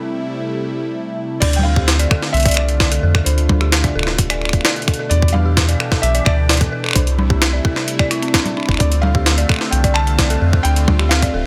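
A rubbery, bouncy square bass with tube saturation sits up front in this intricate, glitchy IDM excerpt at 130 BPM in D dorian, joining a tight electronic kick and a gritty, overdriven, pitched-up jungle sampler-style kit of high-tuned snare, congas, hi-hat, finger snaps and crash at 1.4 s. Before that, a swirling, detuned analog pad with phaser and chorus holds sustained chords alone as a brief break over C6. From 1.4 s a soft, felt-muted upright piano with audible action noise and tape echo carries the melody while an eerie, inharmonic synth bell with 12-bit sampler grit and delay spins arpeggios through Dm7, Em7 and C6 under light reverb.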